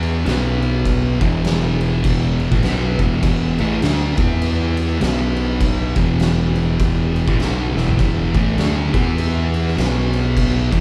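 Sludgy and heavy, this stoner and doom metal passage grinds along at 101 BPM in 4/4, with a 60% swing on the eighth notes giving the riff a loping sway. Two thick fuzz guitars play the riff throughout, both dark and distorted with picked notes; one sits up front while the other lies in the background, and together they move between B5 and E5 power chords. Beneath them, a growling fingered electric bass runs from E1 to E2, direct and amped with an overdriven, punchy edge. The oversized low-tuned drum kit is up front, combining a fat snare, punchy kick, toms and crash cymbal with a gritty, saturated character, a rolled-off top and the sound of a bright stone room. A drum fill arrives at 7.7 seconds, and the whole band sounds as if playing live together in one room under light reverb, in a short cut from a longer piece.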